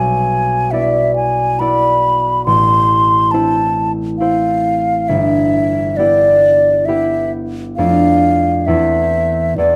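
This romantic classical duo for flute and harp sits in A minor at a slow 68 BPM in 3/4, with a rubato feel and a melancholic, solemn mood. The silver concert flute carries the melody from D5 to C6, its tone airy and hollow, with vibrato and tongued notes placed up front. The concert harp accompanies from G1 to D5, its thumb-plucked strings ringing with an acoustic, warm body that also sits close to the listener. The harmony moves from E7/B to Am, Em/G, Dm/F and Am/E, and both instruments play together across the 9.8 seconds of this cut from a longer piece. A light reverb gives the room a gentle sense of space.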